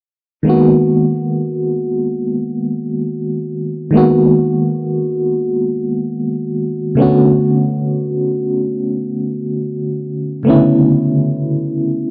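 Unfolding in free time, this brief R&B passage cut from a longer piece drifts along with a moody, sensual air. A single FM electric piano carries the accompaniment from 0.4 seconds, its tremolo giving the tone a warbling, vintage character. Each note has a fast attack that then decays into a mellow glow, with a layer of noise beneath it, and the instrument sits up front in the mix. The harmony rests on G#m9 before shifting to Bm9 at 7.0 seconds, with the voicings staying in a low-to-middle register. A moderate plate reverb and a dark production lend the whole a dusky, intimate atmosphere.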